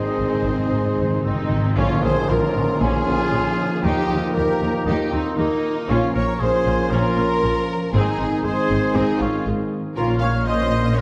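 A hard-mallet timpani fill opens this adventurous, swashbuckling film-score excerpt at 117 BPM in Bb dorian, as a focused violin section carries the melody and a close, even studio violin section adds a second line over lush violas, expressive cellos, distant double basses and a brief, mellow clarinet note. At 1.8 s the band hits an accent and a dark, dry tam-tam sounds, while an airy flute, a soft-edged oboe, smooth-topped French horns and roomy trombones hold lines and chords above ringing harp arpeggios and background trumpet stabs. The orchestra sits in a concert hall reverb, the harmony moving between Ab, Bbm and Eb, with the articulate timpani returning at 5.9 s and again at 10.0 s.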